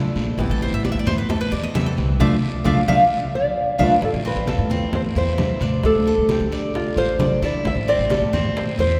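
Bathed in a long cathedral reverb from a church or concert hall, this danceable, nostalgic excerpt of Cuban son and guajira in A minor at 132 BPM opens with a boxy picked archtop guitar that stops at 3.9 seconds, a woody pizzicato upright bass up front, low-tuned thick-skinned congas, tight high-tuned bongos in the background and a raspy guiro, while the metallic double-stringed Cuban tres plays arpeggios as a solo until 4.0 seconds and a warm fingerpicked nylon-string guitar takes the melody up front from 3.4 seconds.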